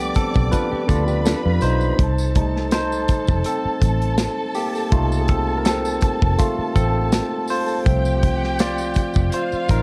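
Lush 1970s-style soul at 82 BPM in 4/4, with a gentle swing on the sixteenths and a silky, smooth mood. A bright, barky tine electric piano, lightly overdriven through a combo amp and sitting up front, takes the solo throughout, moving over G7, F7 and finally Dm7/C. Beneath it, a round, foam-muted fingered electric bass with a dark, amped tone anchors the low end, while a modern studio drum kit with a punchy kick, medium-tuned snare, hi-hat and rolled-off top keeps the groove from 0.2 seconds. A jingly vintage tambourine sits in the background, and a mellow, clean electric guitar adds a brief fingered riff between 0.5 and 2.0 seconds. Carrying the second line, a distant violin section plays bowed, expressive phrases with vibrato and a soft attack, all set in dark, studio reverb.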